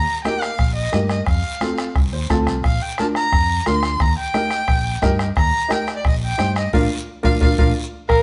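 A clear, smooth erhu opens this sunny, danceable cumbia fragment, taking a bowed solo with vibrato and portamento, up front and close, while a dark, round fingered electric bass holds the low end beneath it. Within the first moments, bright, high-tuned congas played with soft hands sit in the background, a raspy guiro scrapes along, and a close bombo with a soft beater anchors the groove. A worn, woody upright piano, slightly detuned with a short sustain, supplies accompaniment and slips in fills around 2.0 seconds and again near the close. The harmony moves through Eb, F and Bb in a straight four, and the band hits accents together from 6.7 seconds as a drum fill leads toward the turn. At 8.1 seconds a vintage, reedy overdriven combo organ enters up front with light vibrato, just as the clip is cut from the longer piece. The whole band sounds like it is playing live together in a stone room with a moderate reverb tail, its top end softly rounded.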